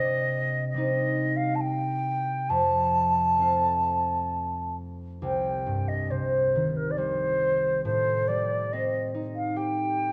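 In a free, rubato three-time lilt, this haunting, longing Celtic slow air pairs a woody, pure baroque flute with soft attacks and an unsteady vibrato, carrying the melody over a fingerpicked concert harp whose ringing accompaniment sits up front. The harmony moves from Cm to F, and a second phrase begins at 5.2 seconds that turns toward Am7b5. A moderate recital hall reverb and a dark, warm production surround this brief fragment of a longer piece.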